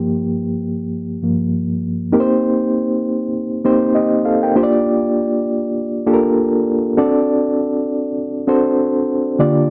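A relaxed 99 BPM pulse in 4/4 carries a gentle swing on the sixteenths, setting an easy, unhurried soul groove in G minor. A lone reed electric piano plays throughout, its reedy, mellow tone sitting clean and up front, heard through its built-in speakers with a tremolo shimmer and ranging from G2 up to G5. The harmony moves from Gm7 to Cm7 at 2.1 seconds, then to Gm7/Bb and finally D7, giving the short passage a smooth, bittersweet pull. The sound is that of a dry, close 1970s-style studio, touched with a digital ambience. This brief stretch, lifted from a longer piece, lasts just under ten seconds.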